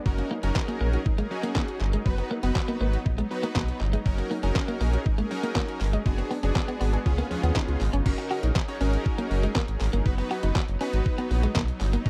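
Dance-pop at 120 BPM in F# major, this short cut from a longer piece feels carefree and euphoric, moving through sustained F#6 and B/F# harmonies with a brief turn to Bm6/F# and C#7. A round, deep analog bass sits up front with sidechain pumping, joined by a detuned 8-bit drum machine whose thumpy kick, handclaps, hi-hat, snare and crash carry an overdriven, sampler-style grit, as if re-recorded in a small room. A fat, bold polysynth with subtle chorus and pumping fills the accompaniment, while a lush, slow-attack supersaw pad breathes in the background beneath it. A clean, compressed electric guitar picks a riff throughout, glossed with lush chorus. A very quiet, warbling, wave-folded unison pluck traces arpeggios until about 8.0 seconds, just as the second section begins. The sound is dry and close, like a 1970s studio recording with little reverb.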